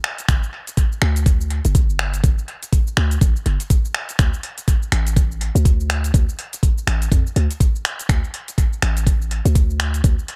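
Metallic hi-hats, finger snaps and shaker from an electronic afro-pop kit, trailed by analog delay, open this spiritual afro house excerpt at 123 BPM with a swung 16th-note feel in D dorian, before an up-front knocking electronic kick and a deep, boomy, sine-toned 808-style bass with fast attack, mellow decay and sidechain pumping join at 0.3 seconds, all set in a dry yet echo-heavy mix.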